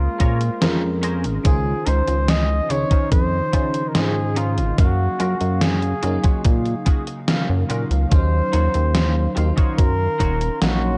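Vaporwave with a hazy, woozy mood, moving at a slow 72 BPM in Eb dorian. This short excerpt is cut from a longer piece. A close-miked flugelhorn carries the melody with light vibrato and a tape echo, floating over a lush, dreamy FM electric piano with a soft pad layer and chorus, while a warbling, lo-fi tape-like pad sits very quietly underneath with nostalgic sustained chords. A glossy, saturated synth bass sits up front with a mellow chorused tone, and a clean, picked semi-hollow guitar plays a riff through analog chorus and delay from 0.2 seconds. A thumpy electronic kick and a gated 80s digital drum machine, with hi-hat and a gated-reverb snare, drive the beat up front. The harmony drifts from Bbm9 through Dbmaj9 and Gbmaj7 to Ebm9, and the dark production keeps the overall sound dry.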